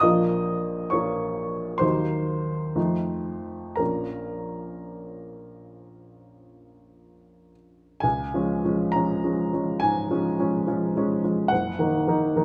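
Rubato pulls the slow 4/4 pulse between 54 and 71 BPM, giving this short extract from a longer romantic nocturne a mournful, wistful mood. A single warm baby grand piano carries the whole piece, ranging from deep bass notes up into the high treble. It opens in Bb minor and moves through Ebm and F7 before settling back on Bbm at 3.8 seconds. At 8.0 seconds the music turns to Db major, opening a new passage that reaches Ebm/Gb just before the close at 12.4 seconds. Close, detailed microphones keep the piano present and up front, while a moderate concert hall reverb adds a lingering space around it.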